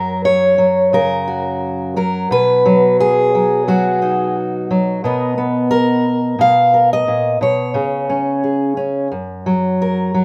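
A lone fingerpicked steel-string acoustic guitar opens this gentle, nostalgic folk piece and carries it for its full 10.2 seconds, a short passage cut from a longer work. The tempo sits around 88 BPM in 4/4, but the feel is rubato and unhurried, settled in F# major. The harmony moves from F# to B, opens onto a dreamy Bmaj7#11 at 5.0 seconds, then passes through C#5 before coming home to F# at 9.1 seconds. The guitar spans its low F#2 up to E#5, with the warm ring of fresh strings, an auditorium-style body and finger squeak adding intimacy. Placed up front in a moderate studio ambience, the guitar sounds close and personal, like a quiet memory being played back.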